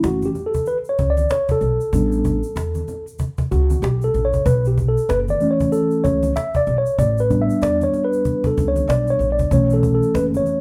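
A swung sixteenth-note groove in 4/4 drives this nocturnal, mellow jazz-hop excerpt, where a clean, direct tine electric piano solos for the full 10.6 seconds over shifting B9sus4 and A9sus4 chords, backed by a dark, thumpy pizzicato upright bass on gut strings, a close, woody cajon with faint snares, and bright egg shaker and soft-handed congas, the band captured playing together in one room with light reverb.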